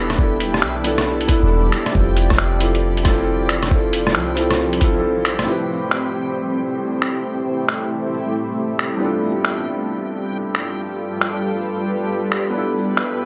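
A felt-muted upright piano opens this nocturnal, melancholic future garage excerpt, its soft, intimate tone carrying audible action noise and an analog delay, alongside a cloudy granular pad and a reversed, swelling texture that glows bright and dreamy under its own reverb. The pad's blurred, evolving chords take on a vintage 12-bit grit, and, like the piano and bass, they pump against a sidechain. Up front, a muffled, pitched-down sampler-style kit of finger snaps, hi-hat and rim click rides a swung 4/4 groove, while a thumpy, compressed electronic kick and a deep, round 808-style bass anchor the opening passage. The kick falls away at 5.0 seconds, and the bass stops at 5.5 seconds as the harmony moves from E7sus4 and Dm7/F into a second section built on Am7 and G9 before returning to E7sus4. The excerpt has a dry, gritty hardware character, with vinyl crackle and a light digital ambience around it.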